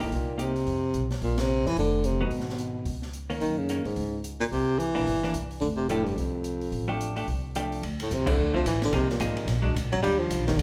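Set in a moderate recital-hall reverb with a 1.7-second decay, this short cut from a longer piece of small-group swing and bop sounds as if captured in a church or concert hall. At 218 BPM in 4/4 with a lilting swing, the mood is swinging and sophisticated. A close-miked baritone saxophone carries the melody up front, mellow and soft in attack, with light vibrato and a breathy subtone. Behind it, a vintage hollow-body electric guitar accompanies with a dark, clean, compressed and picked tone. A pizzicato upright bass on gut strings gives a woody, thumpy low end, and an acoustic drum kit adds dark cymbals, a medium-tuned snare and a punchy kick. The band hits accents together at 1.3 and 8.2 seconds, the second arriving just after a new section begins at 7.8 seconds, as the harmony moves through extended chords such as Cm7, Gb6, C9 and Bb7alt before settling on Ebmaj9.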